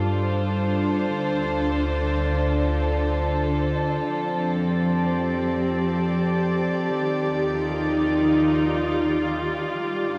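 Dark, intimate bowed studio strings hold soft sul tasto chords under a shimmer reverb from the start of this peaceful ambient excerpt in 3/4, resting on a deep, round sine sub bass and a very faint, veiled haze of muted violins, while a mellow soft-mallet vibraphone rings out arpeggios from 2.3 to 5.8 seconds and a fade-in on the sub bass begins at 4.1 seconds, the dreamy cassette-tape mix soaked in long cathedral reverb.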